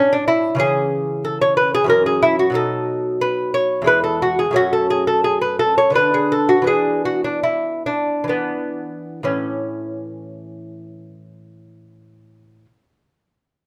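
Close, detailed microphones and a light reverb put a solo lute up front, its gut strings sounding bright and delicate. This excerpt is a flowing, radiant baroque-style dance in 3/4 and A major, played with rubato at a tempo that moves between 61 and 94 BPM. The fingerpicked lute covers a range from E2 up to C#5, and it plays on double strings, some of them octave-doubled. The harmony passes through F#m, C#m7, B7 and E, and the pace slows from 3.6 to 9.3 seconds. At 9.3 seconds a new section opens on an A chord, and the lute rings on until 12.7 seconds.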